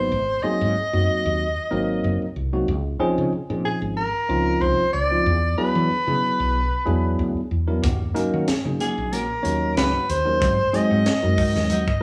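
Electric jazz fusion at 93 BPM with a swung sixteenth feel, funky and nocturnal, as a warm soprano saxophone leads up front with light vibrato, subtone and scooped notes over a clean tine electric piano heard through a combo amp and a dark, round, woody fretless bass moving through chords such as G#9, C#maj9 and E9. At 7.8 s a crisp, saturated drum kit enters up front, with a high-tuned snare, tight kick and a gritty, pumping small-room sound, while a mellow, compressed electric guitar adds fingered stabs in the background. The band plays live in one room, bathed in a large, wet studio reverb.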